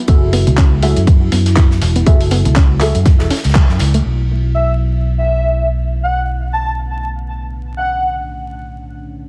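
This deep house excerpt opens on a dark, warbling ambient pad holding F#m9 under a soft, round pluck arpeggio, with a deep, mellow chord stab flickering through chorus, phaser and tape echo over the first 3.0 seconds. At 121 BPM with a swung 4/4 feel in B minor, the mood is deep and hypnotic, driven by a punchy, layered electronic kick up front, a gritty sampler-style kit of handclaps and hi-hat, and a tight acoustic kit adding bright ride cymbal and snare in the background. A growly, amped fingered electric bass sits forward in the mix and runs the full length, pumping against the kick along with the pad, pluck and stabs. After a band accent at 3.6 seconds, the drums and pluck drop away, the harmony moves to Bm9 at 4.0 seconds, and a filter sweep moves across the pad. A breathy, flute-like synth lead with vibrato then enters at 4.5 seconds, carrying the melody through analog chorus, tape echo and a cassette tape coloring. 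The mix is dry, dense and heavily limited, with a layer of vinyl crackle over the top.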